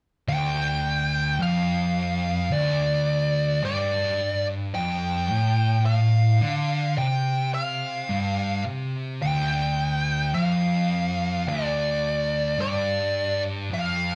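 A fuzz lead guitar sits up front, carrying a dark, wah-colored melody between D5 and G5 from 0.3 to 14.2 s. Beneath it, two thick fuzz guitars play a low picked riff in the range of D2 to D3. One of them has a dark tone and is placed up front, while the other sits in the background with a warm tone. This heavy, hypnotic metal fragment, cut from a longer piece, rests on a single D minor chord throughout, in a slow and straight 4/4. The band sounds as if it is playing live in one room, with a light reverb around it.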